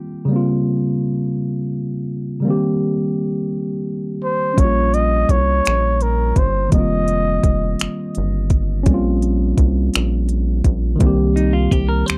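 A slow six-eight R&B fragment with a late-night, yearning mood, where a worn, slightly out-of-tune tine electric piano opens alone before a breathy flugelhorn with tape echo sings a brief jazz-style melody from 4.2 seconds, joined by a rubbery square bass and a soft, produced drum kit of finger snaps, hi-hat and kick, while a dark semi-hollow electric guitar slips in quietly at 11.4 seconds, all in a dry, close 1970s-style studio sound.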